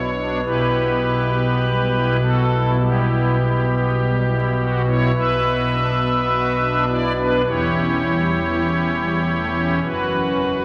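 A pipe organ sounds on its strings celeste stops from the first moment, alone and up front, in a dark, grave, chorale-style classical passage cut from a longer piece. The tone is soft and shimmering, with a romantic voicing that stretches from deep notes at E1 up to E5, and the instrument is tuned to A4 = 442 Hz. At a slow 51 BPM in 4/4, the rubato lets the phrases breathe. The harmony moves from Em/B to Bm at 5.2 seconds, then through C#dim/E before settling on a bare F#5 at 9.8 seconds. A lush church reverb lingers around the organ, while a vinyl crackle sits beneath the whole fragment of roughly 10.6 seconds.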